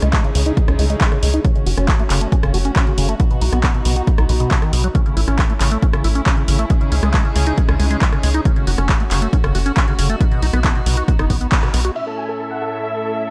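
Uplifting trance at 137 BPM with a soaring, driving mood: a rich, earthy bowed chamber string section holds sustained chords through a filter sweep, a squelchy, resonant acid bass spins chorused, tape-echoed arpeggios, and a tight sawtooth sequencer bass drives the low end, all three pumping against an up-front punchy kick and a tape-warm analog drum machine of handclaps, hi-hat, rim click and crash cymbal in a dry mix, until a band accent at 11.5 s gives way to a huge, airy, detuned supersaw chord melody entering at 12.0 s.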